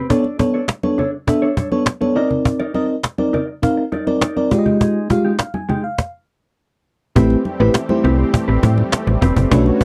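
Slick and danceable, this excerpt of early-eighties boogie funk moves at 102 BPM in a straight 4/4, with a round, chorused FM electric piano laying down minor ninth chords over a snappy, close and dry cajon, soft-handed congas and a dark, clean fingered electric guitar riff, and after a stop from 6.0 to 7.2 seconds a metallic slap-like FM bass arrives up front alongside a lush, detuned sawtooth unison pad, all set in a lightly reverberant 1970s-style studio sound.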